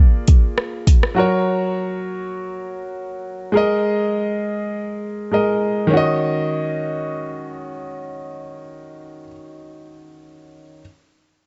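A smooth, vintage-toned concert grand piano opens this tough, hypnotic dancehall fragment in Eb minor at 101 BPM, its deep bass and sidechain pumping carrying chords that move from Bb7 to Gb and Absus2 before settling on Ebm7 at 5.9 seconds. An electronic, produced Afro-pop drum kit sits up front for only a brief moment between 0.3 and 1.2 seconds, its deep kick, metallic hi-hats and rim clicks carrying a tape-warm character. The sound is dry and close, with a dark, rolled-off top end, and the piano plays on alone until 10.8 seconds in this passage cut from a longer piece.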